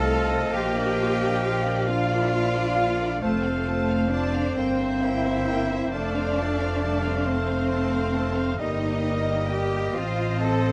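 Classical orchestral music in a slow, romantic 6/8 movement at 44 BPM with rubato, this serene passage has a lush violin section carrying the melody while a second violin line, a pure flute ensemble, a clear oboe and a bright clarinet weave supporting lines above an intense, very quiet viola section, a vintage-toned bassoon and soft-attack French horns holding sustained chords, all grounded by a smooth, close cello section and an up-front double bass section in light reverb.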